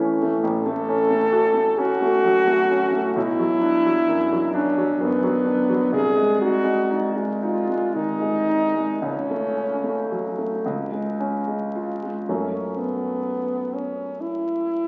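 A clear French horn carries the melody from 0.5 seconds, singing with vibrato in a classical style, up front as the solo voice. This is a romantic classical duo in F# minor, slow and rubato in 6/8 at about 36-46 beats per minute on the dotted quarter, with a yearning, elegiac mood. A warm concert grand piano, natural in tone and deep in the bass, provides the accompaniment from the very start and sits up front alongside the horn. The harmony moves from F#m/A through Bm, G#/B# and F#m/C# to C#, settling on F#m at 12.3 seconds as a new section begins. The pair plays in a wet recital hall, and the sound carries the crackle of a very old 78 rpm record. This is cut from a longer piece and ends at 14.9 seconds.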